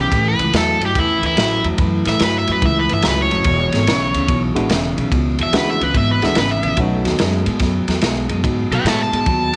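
This electric blues shuffle rolls along at 144 BPM in 4/4 with swing on the eighth notes, rollicking and gritty in mood, and it is cut from a longer piece in E mixolydian. A bright, overdriven cranked stack guitar sits up front and carries a picked solo from E4 to A5 across the full 9.6 seconds, while a second electric guitar through a small old amp plays a slightly broken-up, compressed riff down low. Pizzicato upright bass with steel strings adds a woody pulse underneath, and a crunchy breakbeat drum kit, saturated with dark cymbals and a rolled-off top, drives the groove with kick, snare and ride. An upright piano, polished and in the background, slips in at 4.5 seconds and drops out at 7.4 seconds. The harmony moves from A7 to E9 and then B9, all set in light reverb.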